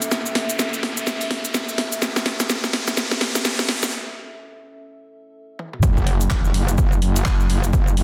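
A distorted, metallic FM wobble bass and an overdriven, punchy electronic kick slam in together at the drop at 5.8 seconds in this swaggering, aggressive bass house excerpt in F# minor at 126 BPM with a swung 16th-note feel. Before that, a dark, detuned analog pad holds a rootless F# minor chord with chorus and sidechain pumping under a filter sweep, while a house kit of handclaps, hi-hat, shaker, toms and a cracking, tape-warm snare plays a fill in the build-up. A background riser runs to 3.9 seconds before a short break, and an impact lands at the drop, all set in a lush hall reverb with a dense, heavily limited master.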